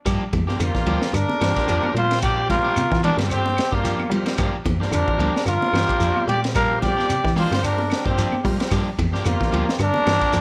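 This driving, hypnotic afrobeat excerpt at 111 BPM in 4/4, with a light 16th-note swing, opens at 0.1 s on a Gm7 chord in G dorian. Two slightly broken-up electric guitars sit in the background, one playing fingered arpeggios through spring reverb and the other picked stabs. Underneath, a soft, round FM bass with a woody, fast-attack tone holds the low end alongside a crunchy breakbeat kit of punchy kick, high-tuned snare, hi-hat and dark ride cymbal, saturated and gritty with a rolled-off top. Grainy shekere, very quiet claves and, from 0.3 s, distant high-tuned congas played with soft hands add a layered percussion bed, while a shouting tonewheel organ, lightly overdriven through a slow rotary speaker, soon fills in behind. At 0.6 s a raspy, growling trombone takes the melody up front with vibrato, scooped notes and tape echo, as a brilliant, punchy, vintage-toned trumpet carries a second line above it, all set in light reverb.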